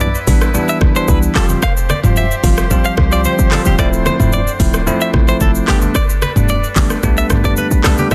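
A punchy, tight 808-style bass sits at the front of this breezy, joyful afrobeats clip, its sine tone carrying a noise layer with a fast attack and short decay. The afro-pop drum kit is nearly as forward, an electronic, produced kit with a knocking kick, metallic hats, handclaps, rim click, shaker and toms, re-recorded in a large room, and soft clipping on the snare. Over this, a bright, bell-like tine electric piano plays the accompaniment while a clean, twangy electric guitar, recorded direct and compressed, picks a high riff through a delay. A warm woodwind section with light vibrato holds sustained chords in a classical style, and very quiet, low-tuned congas with a thin skin sit close and dry underneath. Every part plays throughout the 8.1 seconds over a Cmaj7, Fsus2, Dm7 and Gadd9 progression, set in digital ambience within a dense, heavily limited modern master.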